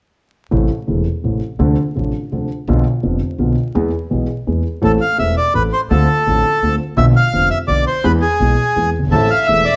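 Melancholic and sultry, this tango in 3/4 moves with a loose, rubato feel and is cut from a longer piece. From 0.5 seconds, an intimate concert grand piano sits up front with deep bass and audible action noise, while a woody, dark pizzicato upright bass on steel strings lays down the low end beneath it. At 4.8 seconds a reedy, dark bandoneon steps forward to carry the melody as the second section begins, repeating the same Am, Dm7, Bdim and E cycle that underpins the first. At 9.1 seconds, as the harmony returns to Am, a warm studio violin section adds a brief bowed second line on a single high note, with light vibrato, a gut-string, period-style tone and a smooth top. A moderate large-studio reverb and a layer of vinyl crackle surround the whole recording.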